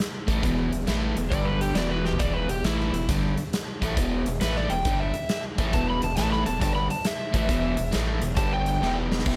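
Gritty and smoky, this short cut from a longer blues rock and southern rock power trio track swings in 4/4 as a huge acoustic arena drum kit with bright cymbals, a punchy kick and a pumping hall sound drives a crunchy, double-tracked overdriven guitar riff and a nasal, wave-folded synth bass, while a dark, fingered overdriven slide guitar with analog delay takes the solo from 1.3 seconds, with drum fills at 2.0 and 8.8 seconds over light reverb.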